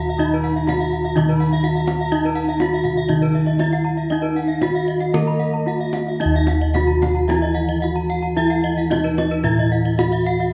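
Brilliant and shimmering, this Balinese gamelan excerpt sets an up-front, wooden-mallet bronze metallophone melody with paired-tuning beats over a dark, smooth metallophone accompaniment, two bright horn-mallet metallophones playing ringing arpeggios, mellow padded bossed gongs in the bass and a tight kendang in the background, while a pure, hollow bansuri with vibrato carries a second line until 6.1 seconds.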